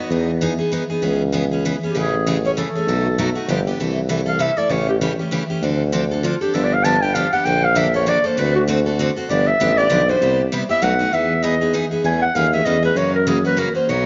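A bright, full-bodied picked steel-string acoustic guitar opens this lively, playful gypsy-jazz swing waltz at 196 BPM in a swung 3/4, with a punchy, vintage-sounding tuba joining almost at once on a bass line that carries vibrato. A raspy, growling clarinet enters with the melody at 1.9 seconds, using subtone and scooped notes, then takes a solo from 3.8 seconds as the music shifts from E major to C major over jazzy seventh chords. Finger squeak comes through on the guitar, the clarinet sounds distant and roomy, and a moderate plate reverb with a dulled top end gives the mix a softened glow. The clip is cut from a longer piece.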